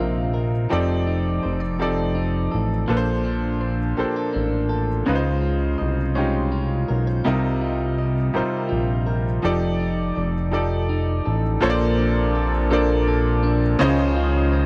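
A slow 6/8 metre with a straight feel carries this tender R&B fragment, cut from a longer piece and moving through Cm7, F13, Bbmaj9 and Dbmaj9. A fat analog bass sits up front, thick and saturated with a fast attack and a detuned edge, holding down the low end throughout. A bright baby grand piano supplies the accompaniment, its brilliant, natural tone close enough that the action noise of the keys can be heard. Alongside it, an electric guitar at the edge of break-up plays a second line, twangy and compressed with a subtle chorus. At 11.6 seconds a hand-pumped harmonium joins in the background with reedy, breathing sustained chords, adding an airy, nasal color for the final stretch. The dry, close sound of a 1970s-style studio keeps the whole performance intimate.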